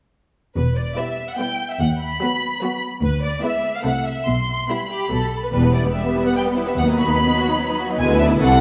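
A wet scoring-stage reverb with a 1.9-second tail surrounds this short string passage cut from a quick classical-period movement in E minor, set at 146 BPM in 3/4 with a restless, dramatic mood. The first violins carry the melody with lush vibrato, portamento and a soft attack, while a dark, expressive double bass section and smooth, even cellos in the background anchor the bass from 0.6 seconds. Second violins and focused violas join at 1.0 seconds with a second line and accompaniment over a progression that moves from Em through B/D# and E7/D to Am/C and back.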